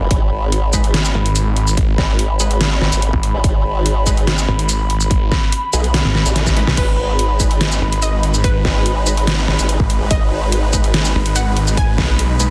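Heavy and chaotic, this excerpt of wobble dubstep moves at 144 BPM in a half-time feel, anchored in G# minor. Two basses dominate up front: a formant-sweep wobble bass, detuned and chorused with overdrive, and a snarling, growling distorted saw bass that joins at 1.1 seconds, saturated and compressed. Alongside them, a punchy, tape-tinged electronic kick drives a dubstep drum kit of deep snare, crash cymbal, hi-hat and shaker, which sounds re-recorded in a large room. In the background, an airy, breathy pad pumps against the sidechain, while a bold, orchestra-hit-like synth stab with ring modulation flashes through its own reverb and delay. After a drum fill at 6.4 seconds, bright supersaw chords and a lush unison pluck with delay arrive at 6.8 seconds, filling out a dense, heavily limited modern master.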